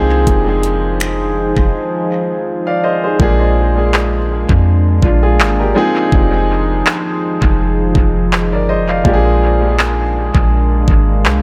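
A clear, intimate baby grand piano with audible action noise and dub echo opens this late-night, longing contemporary R&B fragment over a soft, round 808-style bass, joined at 0.3 seconds by a smooth, produced drum kit of finger snaps, handclaps, metallic hi-hat and knocking kick with its own dub echo, and at 0.7 seconds by a deep, moody, detuned ambient pad with chorus, reverb and sidechain pumping, the hi-hats falling silent at 3.2 seconds as Fm7 and Bb7 alternate in a lightly swung, echo-heavy mix.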